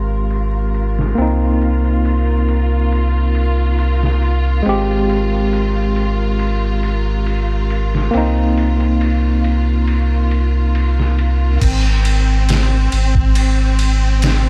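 Hypnotic and smoky, this short trip hop excerpt settles into a slow, straight 4/4 groove cut from a longer piece, wrapped in vinyl crackle with little reverb. A barky, clean tine electric piano played through a combo amp carries the accompaniment with tremolo and tape echo, while filter sweeps move across both it and a bright, biting symphonic string section holding lush, bowed chords with vibrato. Beneath them a deep, round sine sub bass sits up front, and a nasal, string-like sawtooth drone hovers tense and evolving in the background with its own built-in reverb. From 0.3 seconds a gritty, pitched-down sampler-style drum kit thumps along with compressed kick, medium-tuned snare, ride and crash, all filtered and tape-warm as if re-recorded in a small room. The harmony rocks between Abmaj7 and Cm7 until the piano and drone drop out at 11.6 seconds, leaving strings, bass and drums to close on an Ab chord.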